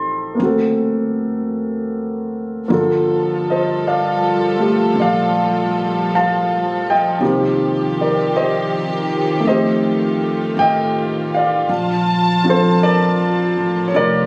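A grand piano with audible action noise and long sustain opens this intimate, romantic jazz ballad up front, over a woody, thumpy pizzicato upright bass with a swung feel. At 2.7 seconds a close chamber string section enters with soft-attack bowed chords and light vibrato, sitting forward alongside the piano as the harmony moves through lush ninth and thirteenth chords. Captured on a phone in the room with light studio reverb and compression, this fragment of a longer piece has a natural, warm closeness.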